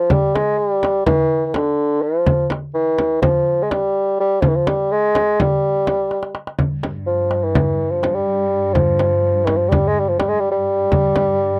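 A mellow, vintage-toned bassoon carries the melody up front in a passionate Turkish makam ensemble piece in 9/8, singing with light vibrato in a classical style over a close, small, high clay-shell darbuka and a deep, large frame drum, both played with soft hands. After a drum fill at 6.1 seconds, a distant, lush bowed cello section enters at 6.6 seconds to hold a smooth, even drone beneath the bassoon. The dry, close 1970s-style studio sound with light reverb gives this fragment of a longer piece a warm character.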